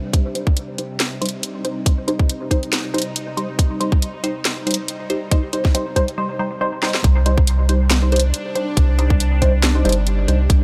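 A half-time groove at 139 BPM in 4/4 drives this brooding, heavy slice of deep dubstep in C minor, its 16ths swung at 55%. Up front, an overdriven electronic kick with a tight punch sits alongside a layered garage kit of handclaps, hi-hat and a cracking snare, the hats and snare thinned by high-pass filtering and roughened by the same overdrive. Over the sustained C minor chord, a bowed-like drone holds tense, string-like chords with slow attack, vibrato and a noisy edge, washed in its own reverb and a phaser, while a muted, nasal dub chord stab plucks short, detuned sawtooth hits through a moving notch, a phaser and dub echo. Both synths carry filter sweeps through a build-up that ends with a drum fill at 6.8 seconds. The drop lands at 7.0 seconds, where a soft, round sub bass enters with a fast attack and sustained, deep weight, sitting prominently in the mix. Light reverb ties the whole together.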